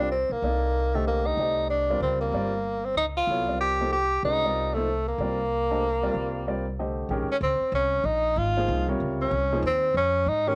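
Modal jazz in a swinging 3/4 at 189 BPM, intense and spiritual, with an up-front tenor saxophone soloing in a smooth, lightly vibratoed voice over vintage-toned grand piano accompaniment and a woody pizzicato upright bass, the sax and piano carrying a cassette-tape grain, as the harmony moves from Cm11 in C dorian to Bbm9 in Bb dorian at 7.1 s, all set in a small room with moderate spring reverb on a home cassette recording cut from a longer piece.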